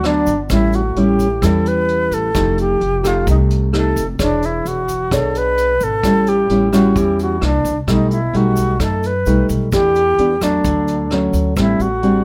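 Romantic and sophisticated, this dry bossa nova fragment at 130 BPM in straight 4/4, tuned to A4 = 445 Hz, sets an airy, reedy alto flute melody with vibrato up front over warm, thumb-plucked nylon-string guitar, woody pizzicato upright bass, a vintage brush kit with a punchy kick and rolled-off top, and a grainy egg shaker tucked in the background, moving through rich chords such as Gmaj7, F9, E13, B7b13 and Dmaj7 before landing on Am11 at 11.6 seconds.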